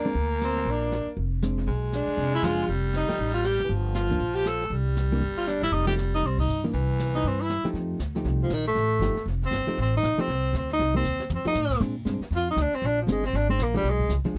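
A clear, vibrato-laden tenor saxophone with scooped notes carries the melody in this relaxed, playful excerpt of small-group swing and bop at 237 BPM in F mixolydian, joined by a raspy, growling baritone saxophone second line until 7.6 seconds, over woody pizzicato upright bass, a dark, clean hollow-body electric guitar and a brushed drum kit with dark cymbals and a boomy kick; after a band accent the tenor takes a solo from 7.7 seconds, with a drum fill at 11.0 seconds, all captured in a dry, close 1970s-style studio sound.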